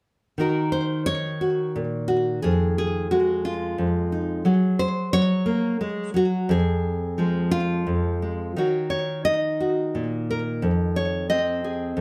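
Folk for solo fingerpicked nylon-string guitar, melancholic and reflective, moving freely in 6/8 around 59 BPM from 0.4 to 12.0 seconds of a longer piece. The full-bodied, deep classical tone sits up front with finger squeaks caught by close, detailed microphones, a slapback echo and light reverb. The chords drift from Ebm7 through Fm7 and Gbsus2 to Fm before returning to Ebm7 and Fm7.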